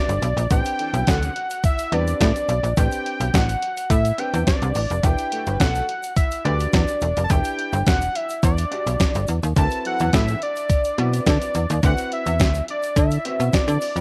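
A lightly reverberant cassette home recording carries this late-night, danceable early-eighties boogie funk cut at 106 BPM in E minor, where a fat, detuned sawtooth analog lead with vibrato sings up front over a thumpy, tape-warmed 12-bit drum machine, a snappy, metallic slap-like FM bass, a clear grand piano with short sustain, a grainy egg shaker, and a dark, chorused analog synth brass line that enters at 0.8 seconds and drops out at 11.1 seconds, all moving through Em9, Am11 and D13.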